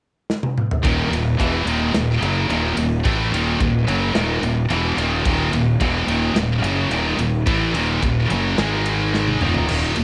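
A dark, relentless heavy metal cut from a longer piece, this one has the sound of a home recording on cassette, set in a small room. At 108 BPM in Eb minor, it opens with a short drum fill at 0.3 seconds on a modern acoustic kit with a tight kick and a medium-tuned snare, touching crash, ride and toms, before the band drops into a half-time feel at 0.8 seconds. Three high-gain distorted guitars then grind out a riff in the low register. The heaviest sits up front, while a double-tracked guitar and a scooped, bright one sit further back. A fuzz-laden, growly fingered bass sits prominently alongside, overdriven with a direct and amped tone. The harmony holds on Eb minor before shifting to Ab5 and then Eb5 near the close, where a second drum fill arrives at 9.1 seconds.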